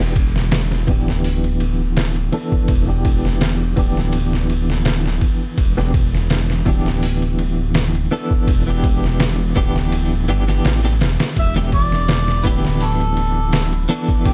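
A dark, rumbling detuned saw bass sits up front with a muffled, thumpy sampler-style drum kit in this melancholic, smoky trip hop excerpt at 83 BPM in E minor, where a clean electric guitar colored by tremolo, 12-bit grit, tape echo and a filter sweep picks over an Em7 chord, and a distant, roomy harmonica with dub echo enters at 11.4 seconds.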